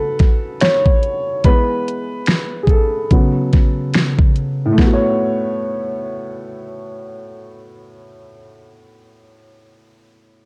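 Swung sixteenths in 4/4 set a mellow, nostalgic lo-fi hip hop groove in this cut from a longer piece, as an electronic, layered drum kit of finger snaps, hi-hat, a knocking kick and a huge snare sits up front with overdrive and vintage 12-bit sampler grit from 0.2 to 5.0 seconds. A dark, woody, boxy upright piano carries the accompaniment through the full 10.5 seconds, moving from A69 to Eadd11 and A6. A small room reverb and worn cassette tape with warbling pitch drift colour the recording.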